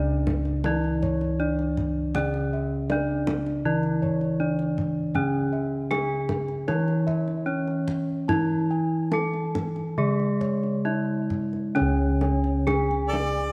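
A bright, ringing bronze metallophone carries the melody up front in this stately, hypnotic Javanese gamelan passage in C# pelog, moving at 66-80 BPM in a straight 4/4. An airy second metallophone plays the accompaniment beneath it, while round bronze bossed gongs supply both the bass and tape-echoed arpeggios. A deep, vintage-sounding kendang played with soft hands keeps the percussion. At 11.8 seconds a shimmering, paired-tuned metallophone joins with arpeggios, and at 13.1 seconds a jazzy harmonica slips in with light vibrato and scooped notes, all set in a moderate scoring-stage reverb on a fragment cut from a longer piece.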